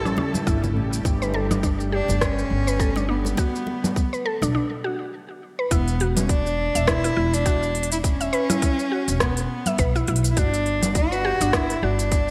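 Mystical and meditative, this organic downtempo excerpt with a gentle swing sets an intimate, airy-bowed cello melody up front over a growly pizzicato upright bass pulsing with sidechain pumping and a tight electronic kick, while a round, detuned FM mallet-like pluck spins chorused, delayed arpeggios, a crisp-hatted electronic kit with gated reverb adds rim click, shaker and congas, and a warbling, tense string-like drone sits in the background alongside very quiet, close and dry congas until both drop out at 4.5 s for a brief break before the second section opens at 5.7 s, all inside a lush hall reverb with a bright 1980s-style digital sheen.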